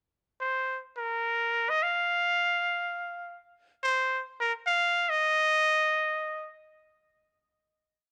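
A dry, close recording in the manner of a 1970s studio captures a small room's ambience around a lone trumpet with a straight mute. The piece is jazz in free time, relaxed and sophisticated in mood, and tuned slightly below standard pitch at A4 = 439 Hz. The muted trumpet sits up front, its tone bright and nasal with a breathy edge, vibrato and a smooth top, moving between Bb4 and F5. Playing solo from 0.4 to 6.5 seconds, it shapes a motif-based melody in sentence-like phrases. A final hit arrives at 6.9 seconds and closes this brief, complete piece.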